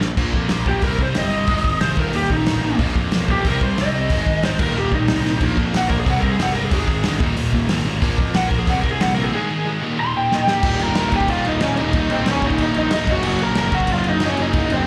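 A straight 4/4 pulse at 184 BPM drives this upbeat, energetic punk rock excerpt in Eb major, cut from a longer piece and heard as a live gig through the venue's PA with club reverb and small room ambience. The loose indie drum kit sits up front with a medium-tuned snare, tight kick, hi-hat and crash cymbal, its top rolled off, and fills land at 0.0, 5.2 and 10.3 seconds. Beneath it, a growly, fuzzed and overdriven picked electric bass runs from Eb1 to F2, while two double-tracked rhythm guitars play the riff: a bright, high-gain distorted one and a dark, overdriven semi-hollow one tucked in the background, both carrying slapback echo. From 0.7 seconds a dark, overdriven lead guitar through a small cranked amp stands up front with its own slapback echo, taking a solo over a cycling Bb5, Cm, Ab5, Eb5 progression until 10.6 seconds. The music then moves into a second section, where the harmony shifts to Gb at 13.1 seconds before the cut at 14.9 seconds.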